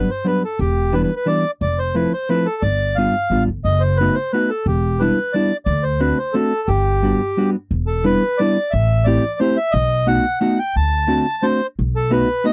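This is a dry, close studio recording with a 1970s character and little room sound, cut from a longer piece. It's a charming, nostalgic musette waltz in three, with a straight feel. A reedy, full accordion carries the melody up front from the first moment. Beside it, a dark, clean hollow-body electric jazz guitar plays fingered accompaniment, and a woody, thumpy upright bass with steel strings enters at 0.6 seconds, plucked pizzicato. The harmony moves through seventh chords such as Gmaj7, Em7, Fmaj7 and B7/F#, then a second section begins at 7.7 seconds on Em7, passing through Am7, B7 and D7.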